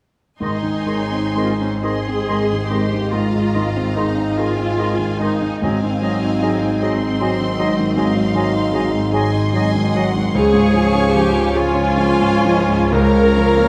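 Classical romantic movement for piano and orchestra, passionate and lyrical, unfolding in 12/8 with rubato across a short passage cut from a longer piece. The up-front concert grand carries the melody in its deep bass and middle register, joined by a lush, vibrato-rich violin section singing high above, while flutes, clarinet, oboe and a second, soft-edged violin section weave gentle second lines. Viola and bassoon fill the accompaniment over cellos and double basses, a dark French horn section sustains chords from 1.4 s, and very quiet timpani on calf heads sound until 6.8 s, all in light reverb with close, detailed microphones.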